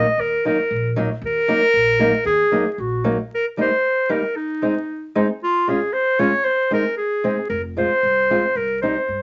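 In a straight 2/4 at 115 BPM, this festive, jolly alpine folk dance-band excerpt begins in Eb minor and shifts to Eb major at 3.3 s, with a clear, close-miked clarinet playing the melody in classical style up front over a dark, boxy, fingerpicked ladder-braced acoustic guitar on old strings, while a growly, thumpy pizzicato upright bass drops out at 3.1 s and returns at 7.5 s, all set in light reverb with vinyl crackle and a dulled top end.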